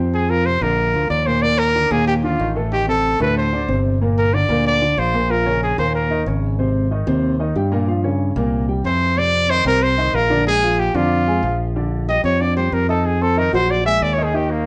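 Recorded live in a stone room with moderate reverb, this sunny, danceable Afro-Cuban jazz excerpt sets a woody, open upright piano and a bright, direct fingered electric bass placed up front beneath a warm trumpet, also up front, with light vibrato, which carries the melody, drops out at 6.2 seconds, returns at 8.9 and takes a jazz solo from 11.8 seconds.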